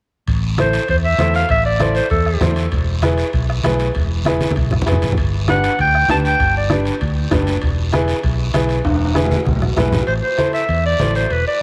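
A straight 4/4 cumbia groove at 196 BPM, fiery and passionate, rides on soft-beater bombo, low-tuned congas, raspy guiro and ringing, distant timbales, with drum fills at 4.4 and 8.9 seconds, while a dark, punchy fingered electric bass anchors the low end, a woody upright piano with audible action noise plays accompaniment, and a breathy, subtone clarinet with light vibrato and slapback echo sings up front in short solo phrases over an Am, E, G, E progression, set in a moderate plate reverb in this excerpt from a longer piece.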